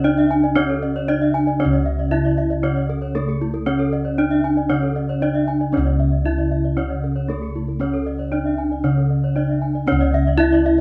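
A ringing bronze metallophone carries the melody between A3 and E4, struck with a horn mallet and tuned in pairs so its notes shimmer with beats, sitting up front with a boxy, small-room warmth. This brilliant, hypnotic passage of Balinese gamelan moves at 116 BPM in a straight 4/4, cut from a longer piece in C# pelog. Bossed gongs anchor the bass from C#2 up to D4+35c with a round, metallic, beating tone that pushes forward in the mids. Beneath the tune, a second metallophone holds a low C#3 accompaniment with a vintage, band-limited colour until 9.9 s. Two more metallophones spin arpeggios above, one played with a wooden mallet from E4 to G#5 and a quieter horn-mallet part from G#4 to E5, both tuned in shimmering pairs. The ensemble plays live together in one room, with moderate studio reverb lending a short bloom to the whole.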